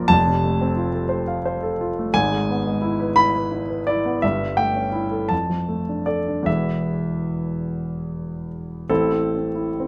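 In a rubato 6/8 that sways between 45 and 61 BPM in dotted quarters, this stormy, passionate romantic character piece for solo piano unfolds in A minor, moving from F through E/G#, A7/G and Dm/F to E before settling on A minor at 8.9 seconds. The grand piano spans from E1 to B5 and sits up front with an intimate, warm tone, short sustain and audible action noise. A moderate studio reverb surrounds it in this brief cut from a longer work.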